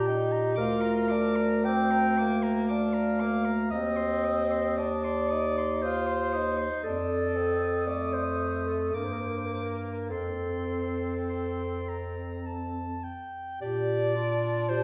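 A warm soprano saxophone carries the tender melody with a light vibrato, sung in a lyrical classical style above a single-reed quartet. Beneath it a mellow clarinet weaves a second line that sounds distant and roomy, while a clear tenor saxophone, also touched with vibrato and set back in the space, fills in the accompaniment. The bass clarinet stands closest to the listener, its soft attack and slightly vintage colour anchoring the harmony from the low register. All four voices play throughout, moving in an unhurried, flexible triple metre through a gentle progression that settles onto a home chord at 13.6 seconds as a new section begins. A generous recital-hall reverb places the ensemble further back in the room, and the passage, lifted from a longer piece, ends at 14.8 seconds.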